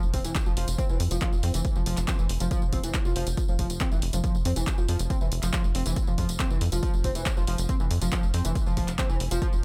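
Driving peak-time techno at 139 BPM in a straight 4/4, this intense, hypnotic fragment of a longer piece pairs a punchy analog kick and a drum machine of handclaps, hi-hat and tambourine, both re-recorded in a small room, with a tight sawtooth sequencer bass pumping through tube saturation, while a gritty, screaming, guitar-like synth lead riff, distorted and chorused with vibrato and analog delay, rides over an F5 chord in a dry, echo-heavy mix.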